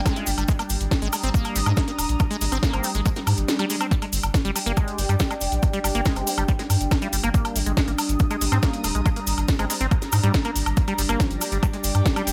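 A straight 4/4 pulse at 140 BPM drives this hypnotic psychedelic trance excerpt, where a punchy, up-front electronic kick, a techno kit with cracking snare, metallic hats and woodblock, and a grainy cabasa frame a deep, round analog bass, a squelchy liquid acid riff with dub echo, an evolving wavetable pad and an airy, breathy pad pumping with the sidechain over Ab5 and G5 chords, while a juicy resonant blip pluck surfaces in the background from 0.2 and again at 6.2 seconds and an electronic swell enters at 3.3 seconds as the kick briefly drops out.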